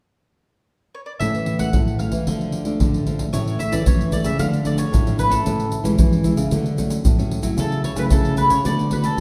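This is a playful, festive blend of samba and choro in A major, moving at a straight 113 BPM in 4/4 and cut from a longer piece. A woody, picked mandolin carries the melody up front, its double strings ringing as it enters alone at 0.9 s. At 1.2 s the rest of the group joins. One fingerpicked classical nylon-string guitar, bright with fresh strings, plays the accompaniment, while a second, warm and thumb-plucked with audible finger squeak, supplies the bass. Surdo, pandeiro and egg shaker sit close, dry and up front, with a deep surdo and soft hands. The harmony rocks between A and Dm before settling into a richer run of Amaj7, Dmaj7, F#m7/C# and Bm7/D, all heard in the wet bloom of a recital hall with a 1.7 s reverb tail.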